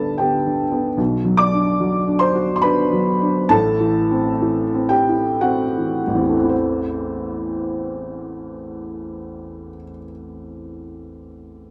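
A soft, boxy felt-muted upright piano sits up front in light room reverb throughout this melancholic, intimate fragment of neoclassical minimalist piano in A dorian, where the solo instrument spans from G1 to D6 in a rubato 3/4 between 53 and 76 BPM, slowing down over the opening 6.5 seconds as dark, mellow chords move from G to Bm to Am before a new passage begins at 6.5 seconds.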